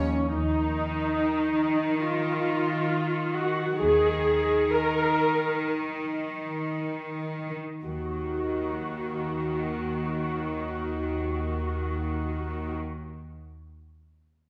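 In free time that slows down over the first 7.8 seconds, this bittersweet, sorrowful cinematic film-score excerpt in Eb minor sets a dark, woody viola section with vibrato, bowed sul tasto up front, over pure, floating cellos holding Eb3 and distant double basses on Eb2, while a very quiet, ringing concert harp plays fingerpicked arpeggios across an Ebsus2 chord until 3.8 seconds, all heard from further back in a wet scoring-stage reverb.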